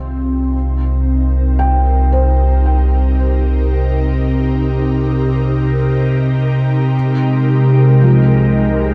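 Drenched in a dark, cathedral-like reverb, this peaceful ambient fragment in free time sets an ethereal, airy pad of chorused, phased sustained chords up front over a deep, rumbling drone, while a felt-muted upright piano with audible action noise spins soft, delayed arpeggios through Cm7 to Abmaj7/C, and a tense, string-like bowed drone with vibrato joins in the background at 7.5 seconds.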